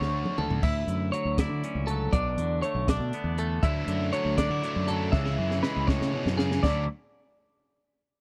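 A compact cocktail drum kit opens with a fill under a clean electric guitar's arpeggios, lush with chorus, while a growling, overdriven fingered bass sits up front and a double-tracked overdriven guitar briefly plays its riff. This playful, wistful math rock and midwest emo cut moves at 80 BPM in 6/8 in D lydian: a bright, twangy guitar joins the accompaniment at 0.6 seconds over Dmaj9, Bm7 and C#m7 chords, and the overdriven riff returns at 3.6 seconds. A second drum fill starts at 5.1 seconds, with the kit's high-tuned snare and punchy kick sounding dark and rolled-off in a dry, close, 1970s-style small-room recording.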